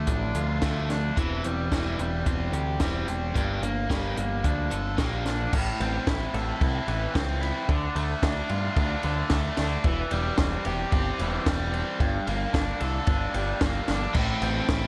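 A dry, echo-heavy mix frames this restless, bittersweet indie rock excerpt in straight 4/4, moving through Dm, C/E and Gmadd9 chords. A bright, up-front overdriven electric guitar drives the riff with spring reverb throughout, while a biting overdriven guitar adds a riff of its own through lush chorus and dub echo until 5.5 seconds, then returns at 14.1 seconds. Underneath, a growling, round, punchy picked bass with overdrive sits up front beside a compact acoustic cocktail kit with a high-tuned snare, punchy kick and dark cymbals.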